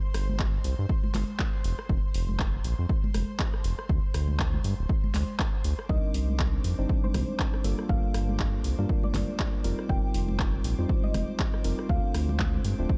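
Hypnotic and deep, this 120 BPM deep house excerpt in a swung 4/4 rides an up-front, punchy, tape-warm kick and a round, detuned analog bass that pumps up front under handclaps, hi-hat and rim clicks from an analog drum machine, bright high-tuned congas in the background and a faint, earthy violin section with light vibrato, until at 5.9 seconds a worn, slightly out-of-tune tine electric piano adds stabs and a soft wave-folded pluck with chorus and analog delay carries the melody through chords like Cm9 and Gm7 in a dark, dry production.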